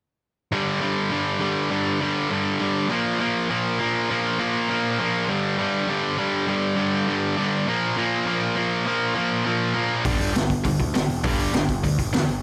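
In a driving, straight 4/4, this rebellious, energetic punk rock excerpt opens at 0.5 seconds with two distorted electric guitars picking a riff that alternates between G5 and Bb5 power chords. The bright, up-front tight guitar sits over a warmer, overdriven sludgy guitar. At 10.0 seconds a raw garage drum kit bursts in with hi-hat, boomy kick and a high-tuned snare, its gritty, saturated small-room sound pushed forward, while a growly, fuzz-laden picked bass joins beneath as the sludgy guitar drops away, all under a light reverb.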